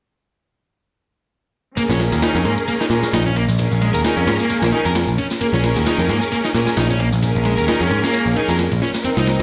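At 1.8 seconds a funky, gritty breakbeat excerpt kicks in on a Bbm7 chord, with a compressed, sampler-style drum kit of thumpy kick, medium-tuned snare and ride cymbal, a faint analog shaker in the background, and an up-front picked electric bass. Over them a crunchy, overdriven guitar riff, roughened by vintage 12-bit sampler grit, filtering and delay, runs until 9.3 seconds, while a lush bowed string section adds smooth, vibrato-rich stabs through filtering and delay. The whole swung groove sounds as if played on a big sound system in a bare stone room, with a dull, muffled top end and light reverb.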